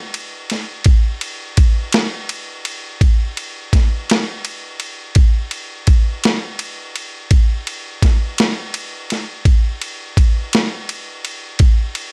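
A dark, warm production with light reverb frames this brooding, soulful blues excerpt at 56 BPM in a straight 12/8. A compressed, gritty, sampler-style boom bap drum kit sits up front from 0.1 seconds to the end at 12.1 seconds, its thumpy kick, medium-tuned snare and ride cymbal keeping a slow pulse.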